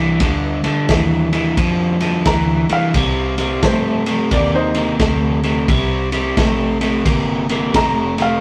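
An overdriven, picked electric guitar riff sits up front from the first moment of this smoky, brooding electric blues shuffle at 88 BPM, with a woody upright piano adding bright accompaniment, its action noise audible, over a round, foam-muted electric bass. A muffled vintage drum kit enters at 0.2 seconds with tight kick, snare and dark ride cymbal, and the harmony later moves from Gm7 to Cm9. The rough rehearsal-room sound carries tube saturation and a moderate stone-room reverb, and the passage is cut from a longer piece.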